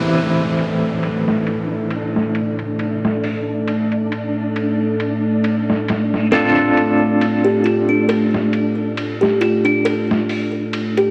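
Steeped in a moderate echo-chamber reverb, this dark, hypnotic trip hop excerpt sets a twangy electric guitar at the edge of break-up, with tremolo and tape echo, over a deep, detuned ambient pad carrying chorus and 12-bit sampler grit, while a gritty, pitched-down boom bap kit with a high-tuned snare and muffled hats and ride shuffles alongside a faint flickering grainy texture and an electronic downlifter that falls away at 6.3 s, when a delicate, slightly out-of-tune music box enters with delayed, tinkling arpeggios.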